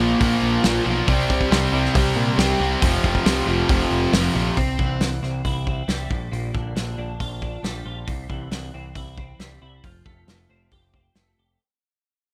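A loose indie drum kit sits up front with a punchy kick and a medium-tuned snare in a small room, driving this dark, cathartic quiet-loud alternative rock cut at 137 BPM in a straight 4/4. Beside it, a growling picked electric bass, overdriven and also up front, holds the low end throughout. In the opening section, two distorted electric guitars and a thick fuzz guitar stack a heavy riff in the background, moving through power chords on Bb, C and F. At 4.6 seconds the texture shifts as a clean, twangy twelve-string electric guitar enters with bright, compressed arpeggios coloured by ensemble chorus, over a C, Bb6, C and Fadd9 progression. Light reverb gives the mix a touch of space, and this fragment of a longer piece fades out from 4.6 seconds to its close at 11.6 seconds.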